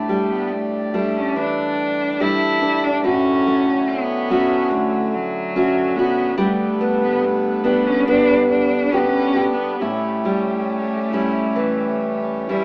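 Celtic folk in the manner of a slow air, this short cut from a longer piece moves at 71 BPM in 4/4 with a free, rubato feel, and its mood is nostalgic and tender. A clear, bowed cello carries the melody from start to finish, one player with smooth, even vibrato, set up front yet sounding distant. A fingerpicked steel-string acoustic guitar accompanies throughout, its tone warm like an auditorium model, and it also sits up front. Beneath them a hand-pumped harmonium holds sustained chords with a reedy, breathing quality. The harmony rests in A mixolydian, passing from A7sus4 through Dmaj7/A and G before arriving on A7 at 9.8 seconds. The whole sounds like a rough home demo in a small room, with an AM radio character and a faint mains hum underneath.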